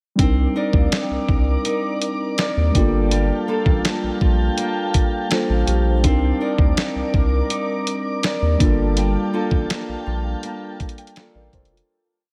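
A gritty, thumpy sampler-style drum kit with fast hi-hat rolls drives this moody, late-night contemporary R&B piece in G minor at 82 BPM, entering together with a deep, saturated sub bass line with slides and ghost notes, muted felt-like synth keys holding dark rootless chords with chorus, a fingerpicked nylon-string guitar through tape echo, and a glassy, warbling FM pad, while from 0.6 s a bell-like celesta, also through tape echo, scatters delicate notes in the background over Cm9 and Gm9 before a fade-out beginning at 9.0 s.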